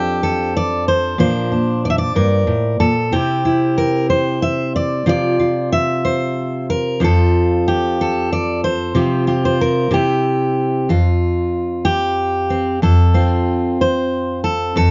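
In a straight 6/8 at 62 BPM, this short pastoral folk excerpt in F major features a lone fingerpicked steel-string jumbo acoustic guitar, bright and full-bodied, sitting up front across a range from F2 to E5. The harmony moves from Dm/F through Bbadd9 to C and Csus4, passes through a chordless moment at 7.0 seconds, and settles on F5 near 10.9 seconds, before the opening section begins again at 12.8 seconds. Light reverb surrounds the guitar, and the sound tops out around 7.5 kHz, giving the recording a gentle, rounded warmth.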